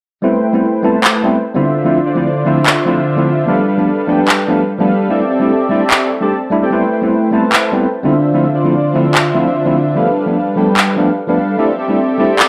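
Future bass excerpt in A minor at 148 BPM, with a half-time, lightly swung feel and an emotional, dreamy mood. A soft, detuned supersaw riff sits up front from 0.2 seconds, full-bodied and mellow through a low-pass filter and digital delay, over a clean tine electric piano that plays through built-in speakers with its own delay and cycles Am7, Dm7, G7 and C6. Layered, tape-warm electronic handclaps enter up front at 1.0 seconds, bathed in studio reverb within a moderate digital room.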